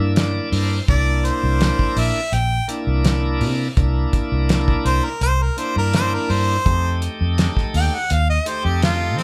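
A bright, shouting tonewheel organ fill through a slow rotary speaker and light overdrive, with audible key click, opens this rollicking yet laid-back straight-eighth soul blues excerpt at 83 BPM over a dark, round, foam-muted fingered electric bass that sits punchy and up front, with a cloth-damped, thuddy drum kit (fat snare, tight kick and hi-hat, its top rolled off) joining at 0.2 s and a clear, jazz-style harmonica solo of scooped notes taking the melody from 0.9 s, all in C mixolydian moving from C9 to F9, played live together in one room with light reverb.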